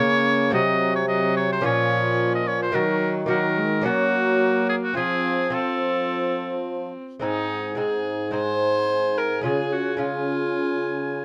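Classical renaissance-style consort dance with a rustic, courtly mood, heard as a short cut from a longer piece, unfolding in a straight four-beat metre and shifting into a new section at 7.2 seconds. A clear oboe carries the melody up front with light vibrato, while a warm viola plays the second line with a reedy gut-string tone and smooth top, bowed by one player in period style. Beneath them a delicate fingerpicked lute with double strings, some octave-doubled, provides accompaniment, and a mellow bassoon with a soft attack holds the bass, all set in light reverb with close, detailed microphones.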